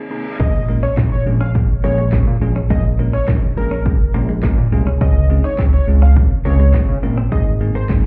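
Dance-pop with a bittersweet, energetic drive: after a reverse cymbal sweeps into the drop at 0.4 seconds, where an impact lands, a punchy overdriven house drum kit drives up front and a fat, detuned analog bass pumps beside it beneath a bell-like tine electric piano, a catchy plucky unison lead with dub echo and vibrato, and a clean direct-recorded guitar riff shimmering with lush chorus in the background, the whole mix heard muffled as if through a club wall.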